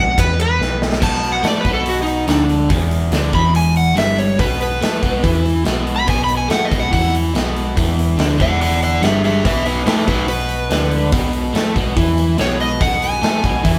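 Blues rock and southern rock from a power trio at 143 BPM in a straight 4/4, this swaggering, raunchy passage cut from a longer piece opens with an up-front overdriven slide guitar solo over a dark, round hollow-body short-scale bass; a drum fill at 0.6 s leads into a crunchy, double-tracked riff guitar entering at 1.0 s, and the slide melody continues over chords moving through B7, Em7 and E7, while a big acoustic kit with punchy kick, medium-tuned snare and bright cymbals drives the band as it plays live together in one room with light reverb.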